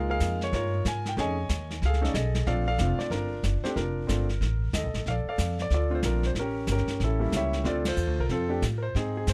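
Swinging and warm, this short cut from a longer jazz piano trio piece moves with a brisk swung feel in four. A concert grand piano carries the melody from the opening, its tone smooth and vintage with a deep low end, sitting up front in the mix. An upright bass plays pizzicato from the start as well, woody and dark with steel strings, also placed close and present. A vintage brush drum kit joins at 0.2 seconds, with brushes on the snare alongside hi-hat, tight kick, ride and dark cymbals, heard with a small-room character and sitting a little further back. The harmony moves through Db6, F7alt and Bbmaj7, later touching A7b9 and Dm7, and the whole trio lands a shared accent at 7.8 seconds. Close, detailed microphones and very little reverb give the recording an intimate, warm presence.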